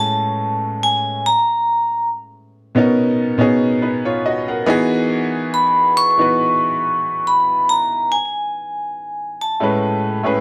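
R&B at a relaxed 70 BPM with a light sixteenth-note swing, this short excerpt from a longer piece feels smooth and soulful, moving through lush major-ninth chords from Amaj9 to Bmaj9, Emaj9 and back to Amaj9. A metallic, ringing vibraphone struck with hard mallets carries the melody high in its range, colored by a slow motor vibrato, a boxy small-room character and a slapback echo. Beneath it, a brilliant concert grand piano accompanies with deep bass and a natural, up-front presence, all set in a moderate studio reverb.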